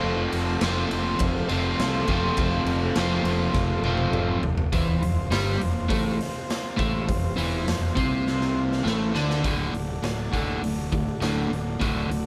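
A double-tracked, overdriven electric guitar riff leads this rowdy, swaggering garage rock excerpt at 102 BPM, with a fuzz-soaked fingered bass punching underneath and a raw drum kit entering at 0.3 s with a punchy kick, medium-tuned snare and saturated, gritty sound in a bright stone room. A mellow vintage combo organ holds overdriven chords with light vibrato in the background and adds a fill alongside the drum fill at 8.3 s. The band plays live in one room with light reverb, shifting from F to F5 at 4.7 s and landing on D at 9.4 s.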